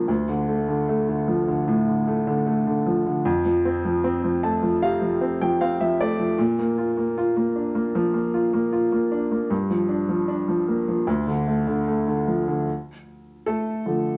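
A clear, natural grand piano sits up front in a wet studio reverb, carrying this short pop piece alone at an unhurried 76 BPM in a straight 4/4. In D minor, it moves through Dm, F, Bb and Gm7 before settling back on Dm, spanning deep bass notes to bright upper tones with an emotional, heartbroken mood. A piano fill stands out from 4.0 seconds, and a brief solo passage begins at 12.7 seconds before the clip, taken from a longer piece, cuts off.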